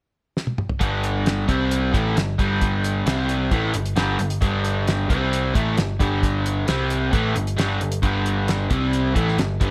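A short drum fill on a cloth-damped, thuddy kit opens this classic rock clip at 0.4 seconds, with toms, snare, kick and hi-hat sounding dry and dark. At 0.8 seconds a raw garage guitar riff enters alongside a picked electric bass, and the three parts drive together through a single section in a straight 4/4 with a driving, swaggering mood. The overdriven guitar is double-tracked and sits up front, shifting between G5 and C5 power chords across its low-to-middle range. Beneath it, the bass has a round, punchy, amped tone, while the drums offer a fat snare, a tight kick and a rolled-off top. Light reverb surrounds the band, some lossy compression artefacts colour the sound, and the recording is cut from a longer piece.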